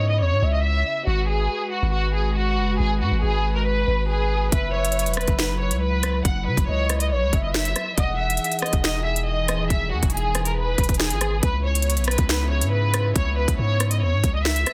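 An ominous, dark half-time drill excerpt at 139 BPM opens on a lush, vibrato-rich violin section carrying the melody through a low-pass filter, over nasal, gut-string chamber strings holding chords from C#m7 to G#m7 and a deep, mellow sine 808 bass. A gliding portamento lead with chorus and digital delay drifts in the background, and at 4.5 s an up-front drill kit joins with a hard-clipped kick, crisp hi-hats, finger snaps, rim clicks and a softly clipped snare, all within a dense, heavily limited master.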